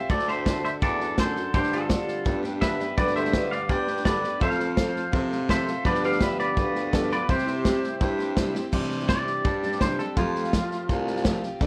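A twangy, compressed electric guitar carries the melody up front in this heartfelt, nostalgic honky-tonk and classic country excerpt at 167 BPM in C major, over a picked, full-bodied steel-string acoustic guitar with finger squeak, an edgy baritone saxophone with vibrato on the bass line, a natural country drum kit with bright cymbals and a punchy kick, and a metallic, jangly tack piano in the background from 3.0 to 8.6 seconds, before a drum fill at 8.6 seconds leads into a clean electric guitar solo, all coloured by moderate studio reverb and the worn, warbling pitch drift of old cassette tape.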